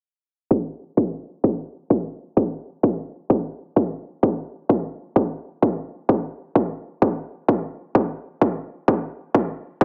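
A punchy, layered electronic kick drum sits up front from 0.5 to 9.8 seconds in this emotional, powerful EDM excerpt at 129 BPM in a straight 4/4, its tape-warm tone re-recorded in a large room and shaped by high-pass filters on both the kick and the room sound, while the dry overall mix carries a low-pass filter and a filter sweep runs throughout.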